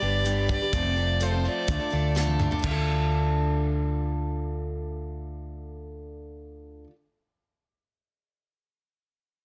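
The recording is dense and heavily limited, set in a small room with light reverb, giving this brief folk rock and heartland rock fragment a reflective, dusty mood in a straight four-four feel. A rich, intense fiddle carries the melody with light vibrato and a tape echo, sounding distant yet up front over a G, F and D minor progression, and it falls silent at 2.2 seconds. Beneath it, a boxy acoustic archtop guitar is picked for accompaniment, finger squeaks audible, while an electric guitar through a small old amp plays a bright, twangy, slightly broken-up riff. A dark, round hollow-body electric bass sits punchy and forward at the bottom. A natural country drum kit with an airy, polished studio sound, medium-tuned snare and punchy kick comes in at 0.3 seconds, and its fill at 2.2 seconds leads into the next section before the drums drop out, leaving the guitars and bass.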